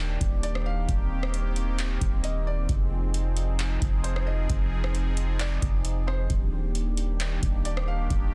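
A booming analog drum machine sets a half-time 4/4 groove at 133 BPM from 0.2 s, its deep kick, metallic hi-hats, handclaps and rim clicks sitting up front with the roomy character of being re-recorded in a large space, while a long, deep, sine-toned 808-style bass holds the low end. This blissful, floating cloud-rap fragment in Eb major rests on a bright, evolving, detuned sawtooth pad with subtle chorus and sidechain pumping, moving from Ebmaj7 to Fm7 and back to Ebmaj7. In the background, a soft, felt-muted upright piano carries an intimate melody through tape echo, and the whole piece sits in a dry, dense, heavily limited modern master.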